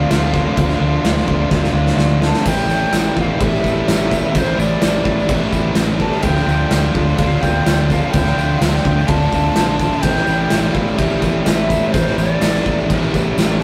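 Melancholic and hazy, this fragment of a longer shoegaze and dream pop rock piece moves at 126 BPM in D minor. A breathy, hollow flute carries the melody with vibrato and tape echo over picked arpeggios from a very quiet, bright, direct-recorded clean guitar, while a biting overdriven guitar and a dark fuzz guitar in the background grind out riffs above a fingered electric bass. An up-front rock kit with a boomy kick plays a fill from 1.5 to 2.5 seconds before a distant, jingly tambourine enters at 2.5 seconds, all set in a stone-room reverb with rough, tube-saturated rehearsal-room grit.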